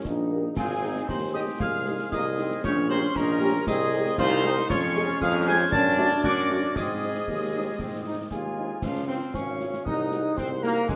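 A dark, distant cornet carries the melody of this rousing, spirited military-style march for wind band in 2/4, over tight, bright trombone chords, an up-front tuba bass with a vintage edge, and close, dry concert snare drum, bass drum and clash cymbals. From 0.3 s a very quiet French horn section supplies accompaniment from afar, and from 0.6 s an airy, tongued piccolo, a bell-like glockenspiel played with soft plastic mallets, and a smooth woodwind section in the background add second lines. A clear euphonium joins at 8.3 s, and the band sits in a wet, large studio reverb in this section cut from a longer piece.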